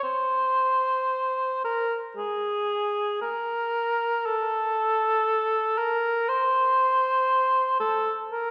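A lone cor anglais opens the recording and carries it from 0.0 to 8.5 s, playing a free, expressive classical line in 4/4 at a slow 54 to 60 BPM with a flexible rubato feel. The mood is lonely and yearning, and the melody stays within a narrow span from Ab4 to C5. The instrument's tone is mellow with a smooth top and a light vibrato, and it sits up front in the mix. Around it, a wet scoring stage reverb with a 1.6 s decay gives the sense of a listener placed further back in the room. The recording is cut from a longer piece.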